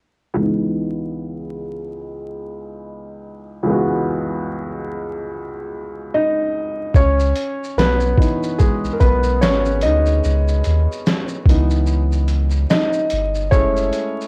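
A swung 73 BPM pulse in 4/4 carries this reflective, melancholic lo-fi hip hop excerpt in C# minor, cut from a longer piece. A felt-muted upright piano opens alone at 0.3 s, its soft, intimate tone and audible action noise heard through a low-pass filter, with a filter sweep shaping it through the opening section. At 6.9 s a gritty, compressed boom bap sampler-style kit arrives, pitched down and re-recorded in a large room, with a thumpy kick, medium-tuned snare, hi-hat and shaker. A deep, round dub sub bass with transformer saturation joins at 7.0 s, sustained beneath as the piano takes a solo over the second section. The harmony rests on C#m9 before moving to F#m9 near the close, all set in light reverb with worn, warbling cassette tape, pitch drift and vinyl crackle.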